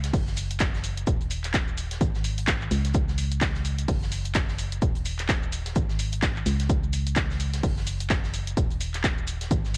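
A dry, cassette-worn home recording carries this bittersweet, soulful piano house excerpt at 128 BPM with a 16th-note swing, where an up-front, hollow, organ-like FM bass with a dark tone and a fast attack that decays pumps against a punchy, tape-warm electronic kick, while a roomy analog drum machine adds handclaps, hi-hat and shaker and a natural-sounding big rock kit sits in the background with filtered, pumping hats, shaker and a medium-tuned snare.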